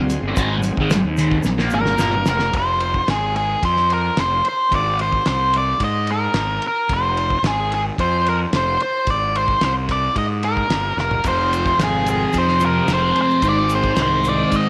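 Trippy and hypnotic, this psychedelic rock passage, cut from a longer piece, rides a straight 4/4 groove in a small room soaked in wet spring reverb. A fuzzed, fingered electric bass sits up front through the whole clip, punchy and overdriven, beneath a cloth-damped drum kit with a fat snare, tight kick, dark cymbals and a gritty, rolled-off top, which fills at 1.5 seconds and again at 11.0 seconds. A thick, double-tracked fuzz guitar riff with phaser opens the clip alongside a very quiet, shimmering string machine with slow-attack violin chords and a grainy egg shaker in the background, all three dropping away between about 2.1 and 2.5 seconds and returning near 11.2 seconds. From 1.7 seconds a dark octave-fuzz lead guitar carries the melody, loudest in the mix and trailed by tape echo. Beneath it the harmony sways between F minor and A-flat after a brief opening on A-flat and B-flat.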